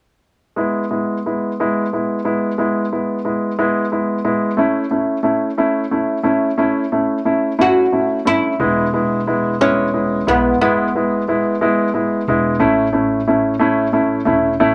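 A swaying six-eight lilt carries this romantic pop ballad, cut from a longer piece, as a present, up-front grand piano plays the accompaniment from the start, a mellow, plectrum-plucked fretless oud with deep double strings carries the melody from 7.6 s to 12.2 s, and a woody pizzicato upright bass enters low at 8.6 s, in a modest small-room reverb.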